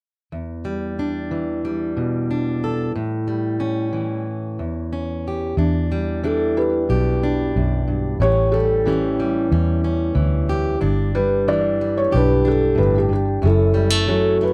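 A felt-muted upright piano carries the melody from 6.3 seconds, its thick felt giving a soft, mellow tone with audible action noise and a slapback echo trailing each note. Underneath, a fingerpicked steel-string acoustic guitar on a jumbo body opens the excerpt alone at 0.3 seconds, full-bodied and up front in the mix. A vintage electric bass enters at 5.6 seconds, fingered and foam-muted for a round, amped sound that sits low. This intimate, melancholic folk-pop ballad moves at 92 BPM in a straight 4/4, drifting through Em7 and A7 in E dorian before touching F#m7 near the end. The dry, close studio sound recalls a 1970s session, and the excerpt is cut from a longer piece.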